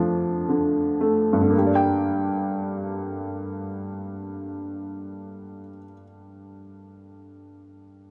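A clear, up-front upright piano carries this short folk excerpt alone, its woody, worn tone slightly detuned and natural, playing an accompaniment that spans from F2 up to G5. The mood is heartbroken and intimate, set in G minor at a slow 56 BPM in a straight 4/4 feel. In the opening 1.5 seconds the tempo slows down over a Dm/F chord before the harmony settles onto G minor at 1.5 seconds. A moderate large-studio reverb lends the piano a sense of space around its close, personal sound. The piano sounds from the very start until 8.1 seconds, a brief fragment cut from a longer piece.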